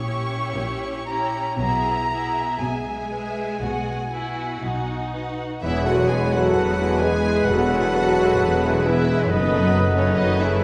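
A warm, sul tasto chamber violin section carries the melody in this serene, slow romantic orchestral passage in E major, drifting with rubato at around 57-68 BPM. Airy flutes and a lush symphonic violin section add second lines over rich, vibrato-laden violas, a very quiet cello section, a focused double bass section and a ringing, thumb-plucked harp playing arpeggios. At 5.6 s a clear solo oboe, a distant clarinet, a dark bassoon, a vintage-toned French horn section holding sustained chords and a very quiet tuba join, all bathed in the wet reverb of a recital hall.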